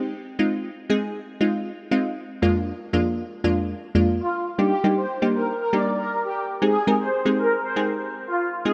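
A dreamy pop mix soaked in plate reverb opens with crisp, warbling wavetable chord stabs at 118 BPM in Eb major, carefree and upbeat as the short excerpt builds over Fm7 and Bb7/F. At 4.2 seconds the drop arrives and an airy, evolving filtered supersaw swell takes the melody, its soft attack blurred by lush chorus and diffuse ambient delay. Detuned unison layers and a moving notch lend both synths a mellow glow, with a vintage tint on the stabs, as the harmony settles onto Ebmaj7 and Abmaj7.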